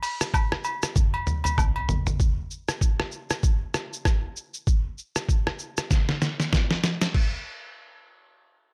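A swung sixteenth-note groove in 4/4 at 97 BPM drives this short, sultry afrobeats excerpt, with a smooth sway. A trip hop sampler-style drum kit carries the track from the start, placed up front with a thumpy kick, a medium-tuned snare, rim clicks, hi-hat, shaker, toms and crash cymbal. The kit sounds compressed, pitched down and muffled, with a tape-warm, sampled character. Agogo bells and woodblock add a quieter acoustic layer, with maraca and group handclap colours and a small-room feel, before dropping out at 1.9 seconds. Drum fills mark the turns between sections, and the sound stays dry and close throughout.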